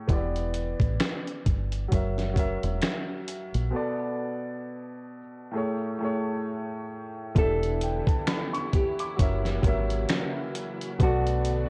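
A woody upright piano with audible action noise and cassette tape colour opens this mellow, cosy lo-fi hip hop excerpt, joined by a gritty, compressed sampler-style drum kit with a thumpy kick, fat snare, hi-hat and finger snaps and a round, dark, foam-muted electric bass, with a break at 3.7 seconds, and at 7.4 seconds a full-bodied fingerpicked nylon-string guitar melody with finger squeak and tape echo and a soft, bowed string section in the background arrive, all beneath worn, warbling old tape and moderate spring reverb.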